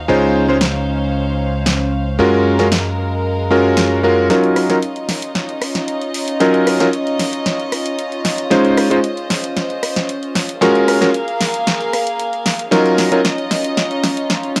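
A dark, reedy violin section holds sustained chords from the start, joined by a bright, punchy slap bass with an envelope filter that drops out at 4.3 seconds. A clear, clangy electric grand piano sits up front with a low-pass filter and analog delay, while a punchy, layered house kit of hi-hat, rim click and snare enters at 0.6 seconds. From 4.3 seconds a build-up with a drum fill drives this sensual, groovy nu-disco cut, heard on a cassette home recording in a booth-like room.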